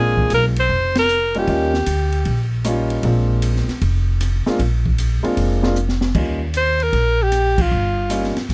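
Close, detailed and nearly dry, this short cut from a longer small-group swing and bop jazz piece moves at 154 BPM in a swung 4/4 with a sophisticated, warm mood, centered on Bb mixolydian over Bb9 and Eb9 chords. A clear, up-front alto saxophone carries the melody with vibrato and scooped notes, dropping out at 2.5 seconds and returning at 6.6, while a woody, polished upright piano accompanies and a pizzicato upright bass with steel strings anchors the low end. An open acoustic drum kit in a small room, with dark cymbals, a high-tuned snare and a boomy kick, adds a fill at 5.8 seconds, and the band hits accents together twice.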